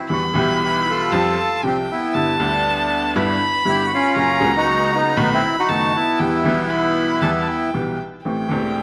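Bathed in a moderate plate reverb, this short fragment of a melancholic, sultry tango unfolds with a rubato feel as a reedy, boxy bandoneon carries the melody up front, a warm, expressive violin with vibrato and portamento sings a high second line, and a brilliant, slightly detuned upright piano, woody and worn with audible action noise and long sustain, supplies the accompaniment.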